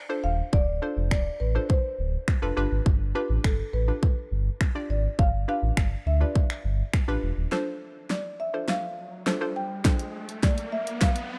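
A straight 4/4 pulse at 103 BPM drives this energetic dance-pop excerpt in D dorian: a punchy, layered electronic pop kit of kick, fat snare, hi-hat and finger snaps sits up front, while a deep sine sub bass with octave pumps beneath it until 7.5 seconds. A woody, rounded marimba played with soft mallets carries the melody over a hollow, bouncy square-wave pluck, detuned and chorused, as the harmony moves from Dm7 to G7 and back. From 7.5 seconds a drum fill builds tension, joined at 8.6 seconds by a faint riser, within a digital ambience.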